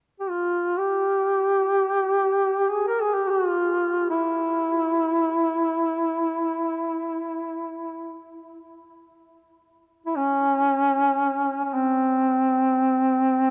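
Unmeasured and in free time, this short excerpt from a Caucasian folk lament drifts along, slowing from 7.7 seconds to its close at 13.5 seconds. A lone duduk carries the whole piece, entering at 0.2 seconds and singing in a mellow, vintage tone between C4 and Bb4. Its phrasing is steeped in folk style, with vibrato and scooped notes that give each line a longing, mournful ache. The instrument sits up front in the mix, wrapped in a moderate cathedral reverb whose long 6.1-second tail lets every note hang in the air. The production is dark and warm, lending the solo voice an intimate, grieving stillness.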